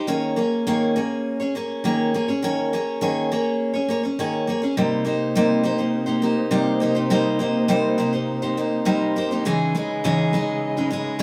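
A picked steel-string acoustic guitar opens the excerpt on its own, its bright dreadnought tone sitting up front with the occasional finger squeak audible as it carries the accompaniment. This is gentle, hopeful acoustic folk at 102 BPM in a straight 4/4, tuned slightly below standard pitch. At 4.8 seconds a muted studio string section enters beneath the guitar, playing sustained bowed chords with a dark, veiled con sordino sound, soft attacks and light vibrato. The harmony moves from Eb7sus4 to Cm7 and then to Dbmadd9. The players sound as if they're performing live together in one small room, with a short, wet reverb around them, and the passage is cut from a longer piece.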